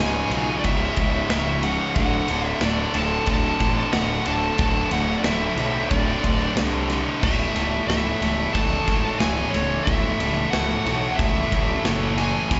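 Heavy metal at 91 BPM in 4/4, dark and aggressive, moving from C#m to D and then A/C# in this short cut from a longer piece. A dark, high-gain lead guitar carries the melody with slapback echo and delay over a very quiet, brighter second lead line, while an up-front overdriven rhythm guitar and a faint, tight distorted guitar play the riff beside a growly fuzz bass. A big acoustic rock kit with a punchy kick and bright cymbals enters at 0.3 seconds, and the whole band sounds like a live club gig heard through the venue's PA, soaked in room reverb with the top end dulled.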